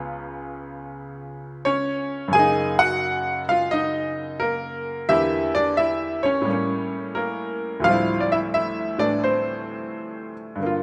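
A bright upright piano opens alone at 0.0 seconds, playing solo jazz at 87 BPM in 4/4 with a swung eighth-note feel, its range stretching from Db2 up to Ab5. The mood is swinging and sophisticated as the harmony moves through Db7, Gb6, Em7b5 and A7b9 before settling on Dm11 at 7.8 seconds. The piano sounds brilliant, woody and slightly detuned, intimate and up front with audible action noise, captured by close, detailed microphones in a recital hall whose moderate reverb lingers around it in this short fragment of a longer piece.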